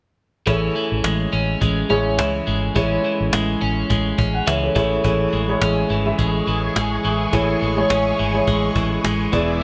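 1980s-style pop at 105 BPM with a light swing and a glossy, uplifting mood, built on a dark, mellow grand piano with lush chorus and an up-front, clean twelve-string electric guitar riff treated with subtle chorus and digital delay, over a round, foam-muted fingered bass and a woody, close cajon struck with hard hands, while a vintage string machine cello patch with phaser and ensemble chorus adds warbling, soft-attack sustained chords from 5.0 seconds, all set in a moderate plate reverb with bright digital sheen.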